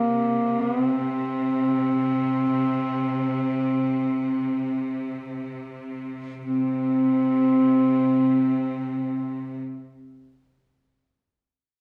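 Caucasian folk lament, a short cut from a longer piece, carries a longing, solemn mood in free, unmetered time. A dark duduk sings the melody up front as a solo voice, in a narrow range from Bb3 to C4, with scooped notes and a smooth top in a folk style. Beneath it, a bright studio string section holds a bowed drone on C3, sitting lower in the mix yet intense and close, with vibrato. The pace slows through the opening passage until 6.5 s, when a second passage begins, and both parts sound together from the start until 9.6 s. A wet recital-hall reverb with a 1.4-second decay gives the recording the resonant air of a church or concert hall.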